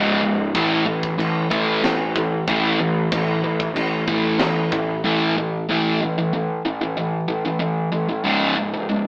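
Heavy and aggressive, this 94 BPM heavy metal excerpt in 4/4 puts a sludgy, double-tracked overdriven guitar riff up front, backed from the start by a growly fuzz bass and from 0.5 s by a tight drum kit with high-tuned snare, kick and china cymbal, both dropping out at 4.9 s, after which the guitar carries the riff alone to 9.1 s, all heard through light reverb, vinyl crackle and an AM-radio sound as a band playing live in one room over C#5 and A5 power chords.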